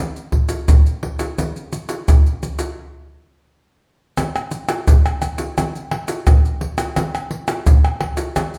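A samba percussion groove of maracas, pandeiro, surdo and tamborim starts at 0.2 s and carries this sunny, joyful fragment of a longer piece. The tempo sits at 86 BPM in a straight 4/4 feel. The acoustic percussion is close, dry and up front, with a tight surdo and hard hands. A break arrives at 2.8 s, and a new section begins at 4.2 s as the ensemble plays on to the end. Around the players, a large studio adds a wet reverb, and the overall sound is heard from further back in the room.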